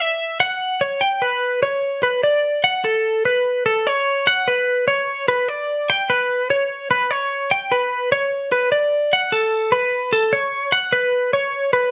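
A studio sound with moderate reverb frames this short rock clip, taken from a longer piece. A lone twelve-string electric guitar carries everything from 0.0 to 11.9 seconds, picked and sitting up front in the mix. Its tone is bright, clean, twangy and compressed as it moves between A4 and G5. The tempo is a brisk 148 BPM in straight 4/4, and the mood balances wistful longing with a playful lift. After a brief opening phrase, a new section begins at 1.0 seconds and runs to the end of the clip.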